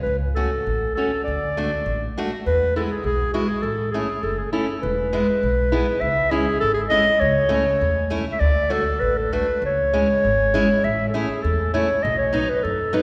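This short excerpt moves in a 2/4 pulse at 100 BPM, yet the time is held loosely and rubato, giving this alpine folk dance band a jolly, bouncy lilt that stretches and gives. A dark, smooth-topped clarinet carries the melody in a classical style, sitting up front as the solo voice from the opening, while a pizzicato upright bass with a woody, thumpy tone anchors the low end. From 0.4 seconds a picked steel-string acoustic guitar joins with accompaniment, also placed up front, its sound carrying a touch of finger squeak. The harmony starts in A major, passing from F#m/C# through D and E to A, then settles into E major at 4.8 seconds, where a second section wanders through C#m, A/C# and D before reaching B at 12.0 seconds. A generous concert hall reverb with a 2.3-second decay wraps the trio in the resonant air of a church or hall, and the piece is cut from a longer performance.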